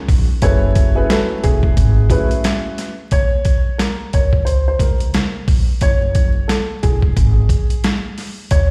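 Boom-bap hip-hop with a moody, gritty character, swung on the sixteenths and cut from a longer piece. A dark baby grand piano opens the accompaniment, mellow and boxy with audible action noise and short sustain, filtered at both ends and lasting only until 2.9 seconds. From 0.1 seconds a sampler-style drum kit sits up front, compressed and pitched down, with a thumpy kick, a medium-tuned snare and hi-hat, while a woody pizzicato upright bass on steel strings carries the low end. A dark upright piano takes the melody from 0.4 seconds, smooth and vintage in tone, filtered and treated with delay. The harmony moves from Gbm11 to Eb5 and then Gbsus2, and the sound carries vinyl crackle and the echo of a bare stone room heard through a big sound system.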